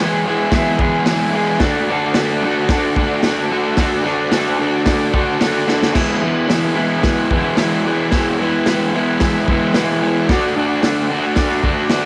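Swaggering and rowdy, this short garage rock cut, taken from a longer piece, struts along at 111 BPM in a straight 4/4, centred on E mixolydian and moving between E and D chords. An overdriven, double-tracked electric guitar sits up front with a picked riff that runs the full 12.1 seconds, its tone coloured by cassette tape. An acoustic drum kit joins at 0.5 seconds, saturated and pumping in a small room, with a boomy kick, a medium-tuned snare, dark cymbals and a rolled-off top, and it drops in a fill at 5.7 seconds. Underneath, a vintage combo organ holds very quiet, buzzy sustained chords with light vibrato, and a transistor organ fill surfaces between 5.1 and 6.0 seconds. Light studio reverb and the home cassette recording give the whole take a rough, homemade edge.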